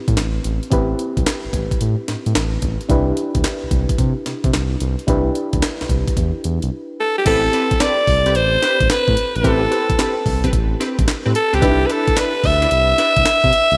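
Punchy and bouncy, this new jack swing R&B excerpt rides a swung groove from a gritty, compressed breakbeat kit with a thumpy kick, high-tuned snare, handclaps, hi-hat and crash, over a smooth, detuned synth bass and a dark FM electric piano playing Am9 and Cmaj9 chords. The drums drop out briefly from 6.7 to 7.3 seconds, and a raspy, close-miked alto saxophone takes the lead up front from 7.0 seconds, while a funky polysynth comp with chorus and a filter sweep adds background stabs. The bright 1980s-style digital production is bathed in a lush hall reverb.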